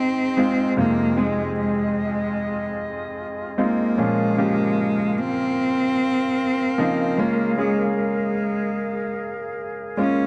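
A tender, emotional pop ballad in a straight 4/4 feel, this short excerpt is cut from a longer piece. A single bowed cello carries the melody up front, its rich, smooth, even tone shaped by vibrato and touched with tape echo. A clear concert grand piano accompanies throughout, polished and present with a deep bass. Behind them, a small flute group holds sustained chords with an airy, tongued sound, vibrato and rolled-off highs. The harmony moves from Ab through Fm7 and Bbm to Db6, and the whole is captured as a dry, close 1970s-style studio recording with light reverb.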